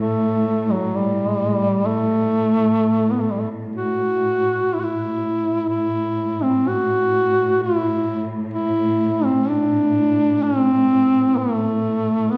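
A mellow duduk sits up front with vibrato and scooped notes, singing a mournful, longing Caucasian folk lament in A dorian at a rubato 63 BPM in 3/4, while a dark, lush bowed string section holds an expressive, vibrato-laden drone on A2 beneath it throughout this 12.4-second excerpt, the whole captured in the resonant reverb of a church or concert hall.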